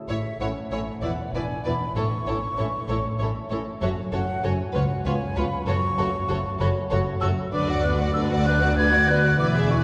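Playful and whimsical, this cinematic film cue moves at 64 BPM in 6/8 in A major, its background concert harp arpeggios ringing from the very start while a string orchestra enters at 0.1 seconds: an expressive violin section carries the melody over a clear, focused second violin line, rich violas in accompaniment, and lush bowed cellos and soft-attack double basses in the bass. An airy concert flute adds a second line above, and a distant, roomy French horn section joins at 0.4 seconds with sustained chords in the background. A wet cathedral reverb gives the whole a church-like glow as the harmony moves from A through F#m7 and C#7 toward Bm/D in this excerpt cut from a longer piece.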